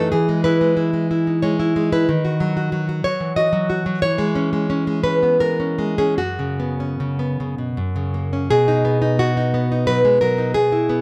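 Tender and sunny, this romantic piece for solo classical guitar moves in a rubato 3/4, drifting between roughly 73 and 93 BPM in B major. A single nylon-string guitar carries everything from 0.0 to 11.0 seconds, fingerpicked and up front, with a bright, full-bodied tone from fresh strings and audible finger squeak. Its range stretches from F#2 up to D#5, giving the sound both depth and sparkle. The harmony opens on E, passes through B/D# and C#m/E, then leans on F#sus4 before settling to F# and arriving home on B at 8.5 seconds as a new section begins. Close, detailed microphones capture the playing in a moderate recital hall whose reverb adds a gentle sense of space around each phrase. This is a short excerpt cut from a longer piece.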